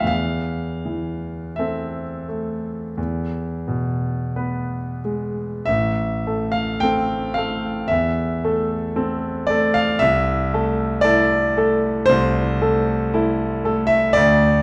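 Rubato and unhurried in 4/4, this mournful, wistful romantic nocturne fragment for solo piano sets a clear, up-front concert grand with a deep, smooth bass and a vintage character in a dark, reverberant recital hall, its harmony moving from A minor over E to E, then back to A minor and A minor over C as the passage shifts into new material at 5.7 seconds.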